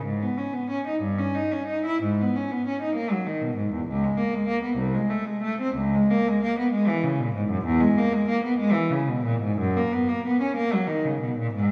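A lone bowed cello opens with a gut-string, reedy tone and light vibrato, playing a flowing, dance-like baroque-style suite movement in 6/8 with uneven, rubato beats. The single player sounds distant, heard from further back in a wet scoring-stage reverb that lingers for about 2 seconds, and the 11.7-second fragment is cut from a longer piece.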